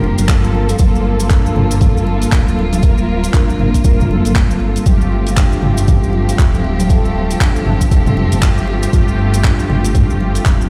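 Afro house excerpt with a driving, warm mood, where an up-front, tape-warm electronic kick and overdriven deep house kit of handclaps, hi-hat and toms drive beneath a dark, rumbling detuned saw bass with tube saturation, while very quiet thick-skinned congas, a grainy cabasa, a woody kalimba arpeggiating from 0.2 seconds, round synth brass stabs with chorus, phaser and dub echo, and rich bowed chamber strings holding sustained chords move from Gm9 to Fadd9, all heard in a bare stone room over a big sound system.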